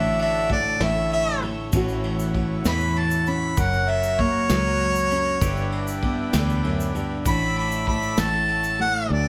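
A harmonica solo opens this short passage of gentle, nostalgic acoustic folk in 6/8, over thumb-plucked nylon-string guitar, reedy accordion chords and fingered electric bass. Carrying the melody up front, the harmonica has a warm tone with light vibrato, a classical bearing and a slapback echo, and it sounds distant and roomy. Beneath it, the guitar sounds dark and deep, the accordion holds full, rich sustained chords, and the foam-muted bass adds a round low end. A vintage drum kit played with brushes joins at 0.2 seconds, with a punchy kick, medium-tuned snare and dusky ride cymbal, and a grainy, bright tube shaker slips in quietly behind everything at 1.7 seconds. The harmony drifts from A through F# and G6 to a suspended A before settling back on A, all in a moderate studio reverb.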